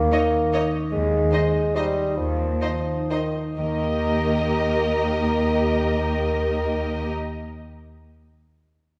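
Up front, a focused, lush cello section holds a low bass note beneath this brief, festive cut from an elegant orchestral ballroom waltz in three, played with rubato and slowing from 0.3 to 3.6 seconds. A mellow solo bassoon and a ringing, fingerpicked concert harp carry accompaniment and arpeggios, while two bowed violin sections with vibrato and soft attacks share the melody and a second line, and a viola section with portamento sits in the background. Heard from further back in a wet concert hall, the violins sound smooth and expressive as the harmony settles onto a new chord at 3.6 seconds.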